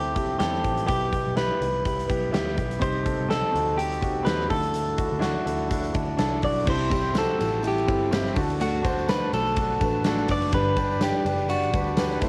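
A piano-driven pop excerpt at 124 BPM in 4/4 moves with a light swing on the sixteenths, its mood warm and hopeful. A clean, direct-recorded electric guitar carries the melody through lush chorus and cassette tape coloring, while a clear concert grand piano, up front with audible action noise and long sustain, supplies the accompaniment over a round, foam-muted vintage bass. A huge arena drum kit enters at 0.2 seconds with a punchy kick, medium-tuned snare, bright cymbals and a pumping room sound, playing crash, ride, hi-hat, snare and kick. At 6.7 seconds the harmony shifts from a passage moving through C, Em/B, Cm and Dadd9 to a C, D, G progression, and a full-bodied fingerpicked dreadnought acoustic guitar joins in the background alongside a jingly, very quiet tambourine. The whole mix sits in a small room with light reverb and the soft grain of a home cassette recording.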